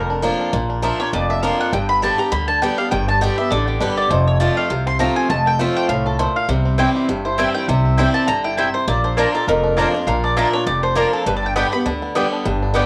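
Driving and lively, this short bluegrass excerpt swings along as a picked mandolin and a twangy, fingerpicked banjo tucked in the background share the melody over a bright, boxy swing-style acoustic guitar up front with a cassette-tape tint and a woody pizzicato upright bass, while a second mandolin joins with stabs from 6.8 seconds, all in a lightly reverberant home cassette recording.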